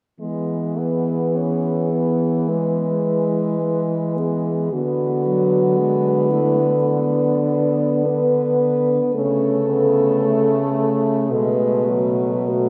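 A tender, lyrical classical passage for horn quartet in E major, with all four French horns entering together at 0.2 s and moving in a slow, rubato 4/4 at around 47-57 BPM. A dark-toned horn with light vibrato sings the melody from a distance, while two mellow horns carry the second line and accompaniment, and an up-front bass horn with a soft attack and gentle vibrato anchors the harmony. The sound is bathed in a lush cathedral reverb that lingers after each chord in this short cut from a longer piece, which ends at 12.7 s.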